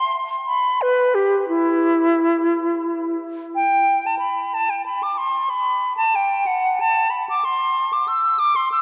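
Classical baroque-style fantasia for unaccompanied flute in E minor, grave and flowing at a rubato 56-65 BPM in dotted quarters of 12/8 and tuned to A4 = 445 Hz, where the solo concert flute sits up front with a pure, expressive tone, tongued notes and vibrato across its E4 to E6 range for the full 8.8 seconds of this fragment cut from a longer piece, bathed in a wet cathedral reverb and colored by the worn, warbling pitch drift of old cassette tape.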